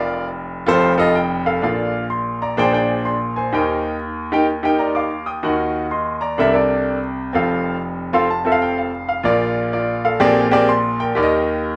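A swung eighth-note feel at 126 BPM in 4/4 drives this hopeful, reverent gospel passage in Bb major, cut from a longer piece. A solo grand piano carries everything, its bright, brilliant tone sitting up front and reaching from the deep bass up into the high treble. The harmony moves from Bb/F and F into a richer middle stretch that passes through Bb13, Eb and a darkening Ebm before C13 and F lead home. A piano fill from 7.8 to 9.3 seconds bridges back to the opening material, which returns with Bb, Bb13 and Eb. A moderate large-studio reverb and a live, one-room capture give the instrument a natural, open presence.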